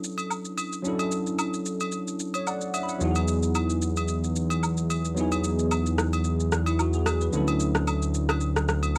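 This short fragment has the hazy, lightly reverberant sound of a home recording on cassette, with a relaxed and warm mood. It is an amapiano groove in four with a gentle swing on the sixteenths. A bell-like, bright tine electric piano sits up front, colored by analog chorus and tape and shaped by a filter sweep throughout, with a brief fill from 2.2 seconds. An electronic shaker and rim click carry the drums, also through tape, while close, dry acoustic agogo bells and woodblock add a light percussive layer. At 3.0 seconds a fat, detuned sawtooth-and-square bass with a plucky filter and tube saturation arrives prominently in the low register, as the harmony moves from Dmaj9 to Emaj9 before returning to Dmaj9 at 7.3 seconds.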